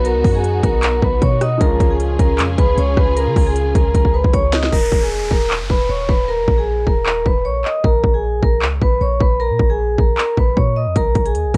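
A dusky, lo-fi home-cassette sound with studio reverb frames this brooding, eerie trap excerpt in Eb minor at 154 BPM, felt in half-time, where a close-miked, metallic vibraphone rings out the melody up front over a deep, boomy 808-style bass and a hard-clipped, sharp electronic drum kit with crisp hats, claps, rim clicks and 12-bit sampler grit. For the opening 4.7 seconds a very quiet felt-muted upright piano, with audible action noise, and a distant, woody symphonic string section bowing lush sustained chords fill out the harmony, before a drum fill leads into a sparser passage. From there an electronic downlifter sweeps through while the hi-hats drop out until 11.0 seconds, leaving vibraphone, bass and drums to carry the piece.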